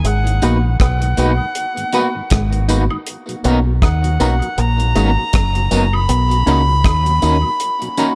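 A bright, reedy soprano recorder leads this tender, romantic lovers rock reggae excerpt in B major at 79 BPM, sitting up front with an airy, tongued chiff, vibrato and a tape echo as it carries the melody between F#5 and B5. Underneath, a deep, round dub bass on fingered electric bass and a dry reggae drum kit with a tight kick, hi-hat and rim click hold the swung 4/4 groove, both placed up front. A clean, twangy guitar through an envelope filter plays a riff in the background from 0.1 seconds, and by 0.4 seconds a barky, lightly overdriven tine electric piano with tape echo and a dark, slightly broken-up fingered guitar with tremolo stabs have joined. A very quiet, mellow tonewheel organ with chorus vibrato and a slowly turning rotary speaker fills in softly, while a vintage, band-limited layer of tambourine, woodblock, egg shaker and group handclaps with tape echo ticks along behind. 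The harmony moves from G#m7 to Bmaj7 and then Bmaj9 in a small room with light reverb, and the bass drops out at 7.4 seconds as the fragment closes.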